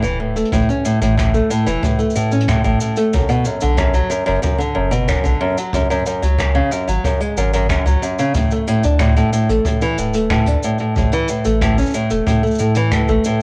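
Folktronica with a pastoral, warm mood, moving at a straight 92 BPM in 4/4 and cut from a longer piece. A fingerpicked nylon-string guitar sits up front, playing arpeggios with a small, intimate tone and the soft grain of cassette tape. Beneath it, a deep, round sine sub bass holds sustained notes with a fast attack. A jazz brush kit of cabasa, finger snaps and hi-hat stays distant and roomy, while a boomy kick, also played with brushes, enters at 0.5 seconds and stays in the background. The chords pass through Dsus2, Bm, F#sus2, D5 and A5, and light reverb with small room ambience gives the whole a homespun, cassette-recorded warmth.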